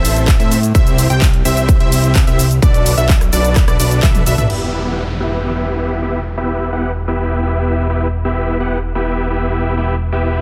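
A huge, detuned supersaw lead carries the riff through this euphoric, emotional festival progressive house cut. Its sawtooth unison is roughened by vintage 12-bit sampler grit and shaped with a low-pass filter, tape echo and sidechain pumping. The piece opens mid-drop, where a plucky unison lead adds catchy, mellow arpeggios with its own echo and pumping. Beneath them, a fat, nasal analog bass sits up front, saturated and evolving, under chords moving from Am through C to Bm7. A punchy electronic kick drives the drop alongside a layered big-room kit of crash, handclaps, hi-hat, rim click, shaker and toms, and a drum fill at 4.0 seconds leads into the next section. Around 4.5 seconds the pluck and drums fall away, the harmony settles on Em, and a downlifter sits in the background under the sustained lead and bass, all framed in digital ambience and a dense, heavily limited modern master.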